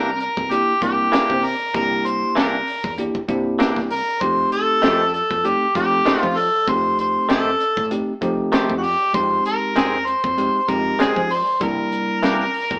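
Rollicking yet laid-back, this short cut from a longer straight-eighth soul blues moves at 97 BPM in 4/4 with a light sixteenth-note swing, cycling from C9 through F9 and Fm7 back to C9. An overdriven harmonica with light vibrato carries the melody up front, punchy and roomy, over bell-like tine electric piano accompaniment, bright, twangy stabs from a clean, compressed electric guitar, and a woody fretless bass. A tight funk drum kit with a high-tuned snare joins at 0.2 s, and the band sounds as if it is playing live in one room, heard through an AM radio tone with moderate reverb.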